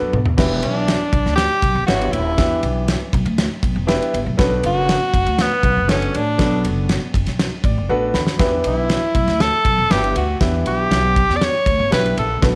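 A straight 4/4 pulse at 120 BPM drives this uptempo 1960s-style soul excerpt in E dorian, and the mood is passionate and urgent. The acoustic drum kit sits up front with a small-room sound, a fat snare, a tight kick, dark crash and ride cymbals, and a rolled-off top, with drum fills at the very start and again at 7.9 seconds. Beneath it, a pizzicato upright bass on gut strings gives a woody, thumpy low end, while a smooth, vintage-toned grand piano supplies warm accompaniment and adds a fill of its own at 7.4 seconds. The clear tenor saxophone takes the solo melody from 0.6 seconds, up front with light vibrato, a smooth top and a slapback echo in a pop style. The harmony moves from Em7 to Bm7 and back to Em7, and a light studio reverb surrounds the performance.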